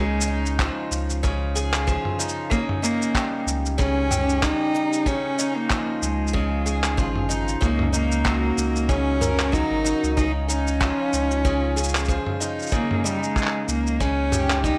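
A warm, lightly swung groove of muffled, compressed sampler-style handclaps, shaker and toms sits up front over a distant, roomy kick played with brushes, carrying this pastoral folktronica excerpt as a bright, shimmering twelve-string acoustic guitar picks octave-doubled arpeggios and a close, bowed cello sings a smooth melody with vibrato, both trailed by tape echo, while a deep, round sine sub bass holds the low end through gently shifting add9 and suspended chords.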